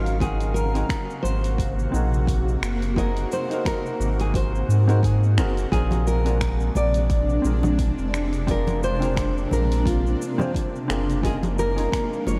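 A fingerpicked nylon-string guitar with audible finger squeak, roughened by 12-bit sampler grit and analog delay, carries the melody over a smooth sunset chillout groove at 87 BPM with swung 16ths, where a round, up-front sine sub bass, a dark, clean hollow-body jazz guitar through its own analog delay, and a shimmering, ethereal pad with chorus and phaser move through Ab9, Bb9 and Gbmaj13, while a deep electronic kick and a deep house kit of cabasa, finger snaps and dark hi-hats keep time, soft, very quiet congas join at 5.9 s, and a cathedral reverb leaves this dreamy excerpt from a longer piece soaked in space.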